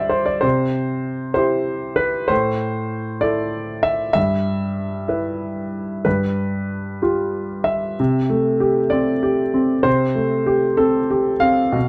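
The recording has a dark, warm production, with a moderate studio reverb that gives the piano a sense of room. This is neoclassical minimalist piano in 6/8 at 64 BPM, counted in dotted quarters, played with a rubato feel and an intimate, melancholic mood. A solo concert grand sits up front, with a clear, natural tone and a deep bass, ranging from G2 to F5. The harmony moves through C, Am, Em/G and G7 in the opening passage, then a new section begins at 8.0 seconds on a C6 chord. The recording is cut from a longer piece and stops at 11.9 seconds.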